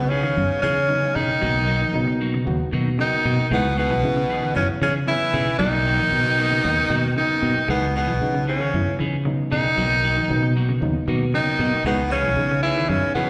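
A raspy, gritty tenor saxophone carries the melody up front from the start of this intense, funky afrobeat cut at 115 BPM in C# dorian, its scooped notes and light vibrato touched by slapback echo, while a breathy, very quiet second tenor and an edgy baritone sax play a lower second line. A round, amped fingered bass anchors the C#m9 to Bmaj7 vamp, joined by a dark semi-hollow guitar playing arpeggios, a reedy overdriven electric piano through a combo amp, and a clean picked guitar adding stabs from 0.1 seconds, each tucked in the background. The sound is a live gig heard through the venue's PA, with small-room ambience and recital hall reverb.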